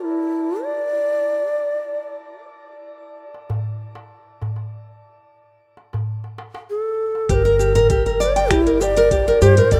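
Organic downtempo with an earthy, hypnotic mood, where a breathy low wooden flute with vibrato and a ringing bronze singing bowl in the background open the excerpt, a crisp metal-shell darbuka enters at 3.3 seconds, and at 7.3 seconds a bright, fingerpicked nylon-string guitar with delay and shimmer reverb, a woody pizzicato upright bass with sidechain pumping, a gritty, thumpy electronic kick drum and an electronic kit of cabasa, finger snaps and smooth low-pass-filtered hi-hat join the flute over a G minor chord in a rough home demo mix.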